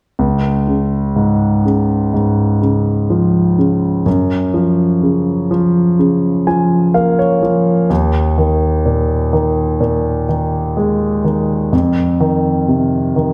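A concert grand piano sits up front in a wet recital hall, its long sustain blooming into a reverb tail of about 1.6 seconds, with audible action noise lending the sound an intimate, polished closeness. This short pop excerpt, cut from a longer piece, moves at a slow 62 BPM in a straight 4/4 and carries an emotional, heartfelt mood in Db major. The piano is the only part, playing accompaniment from 0.2 to 13.3 seconds across a range from deep bass Db2 up to Ab5. Its harmony drifts from Db to Gbmaj7 and on to Ebsus4 before settling on an F7 voicing. A brief piano fill from 6.0 to 7.9 seconds adds a moment of ornament before the Ebsus4 arrives.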